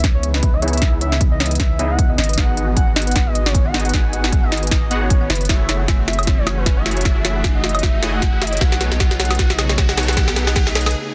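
A lush, emotional future bass build-up with a half-time swing, where a soft, round octave-layered synth lead with vibrato carries the melody over an ethereal airy pad, a tine-like thumb-piano-style pluck arpeggiating in the background and a punchy detuned supersaw stab riff, both filter-swept, all pumping against a deep sine 808 bass, a hard-clipped kick and a trap kit of sharp snare, crisp hats and woodblock, with a very quiet riser entering at 2.9 seconds before a break at 10.9 seconds in this dense, heavily limited excerpt.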